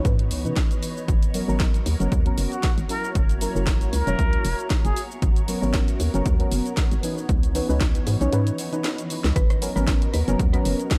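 A plunger-muted trumpet carries the spotlight in this hypnotic, smooth deep house excerpt, slipping in at 2.5 seconds for a brief, breathy jazz-style solo with wah-wah colour, vibrato and an intimate, whispered tone trailed by delay. Underneath, a punchy, tape-warm electronic kick sits up front, joined by a layered house kit of hi-hat, rim click, shaker and a cracking snare that sounds re-recorded in a small room, all on a lightly swung groove. A hollow, bouncy FM bass and deep, nasal chord stabs with chorus and digital delay pump against the kick, while a filter sweep works across the stabs through the opening stretch. Further back, a silky vintage string machine with phaser and ensemble chorus and a cloudy, evolving granular pad with its own reverb float through shifting ninth, eleventh and seventh chords. The kick drops out at 8.3 seconds and a drum fill follows at 8.8 seconds. At 9.4 seconds the drop arrives as a woody, round mallet-like pluck with a cassette tape tint sounds a single note in the background of the dark, warm mix.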